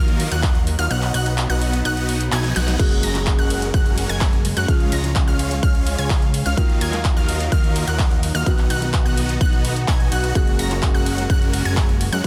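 Triumphant and euphoric, this excerpt of festival progressive house drives along at 127 BPM in a straight 4/4 in F# major, cycling through D#madd9, B, F#add9 and C# chords. A huge, detuned supersaw riff with a bright phaser sheen and dub echo sits over a fat, wave-folded analog bass, while a nasal, lush unison pluck spins high arpeggios and a focused, distant studio string section holds sustained chords in the background, all breathing with sidechain pumping. The overdriven electronic kick hits punchy and up front, backed by a big-room kit of huge snare, handclaps, metallic hi-hats, ride and crash cymbals re-recorded in a small room. The kick drops out briefly after its entry, as a drum fill and a very quiet reverse cymbal lead back in at 2.8 seconds, where a dark, boxy grand piano with audible action noise joins in the background. The mix is dry, dense and heavily limited, with a modern polish.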